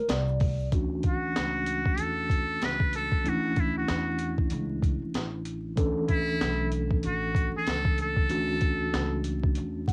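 Smooth and relaxed, this jazz-hop excerpt sets a mellow tine electric piano and woody, growly upright bass alongside a gritty, thumpy boom bap drum kit with a high-tuned snare, while a very quiet shaker and congas touch only the first moments and a breathy, buzzy muted trumpet carries an intimate melody from 1.1 to 9.2 seconds, all wrapped in light reverb and the vinyl crackle of a home cassette recording, with the electric piano slipping in a brief closing fill.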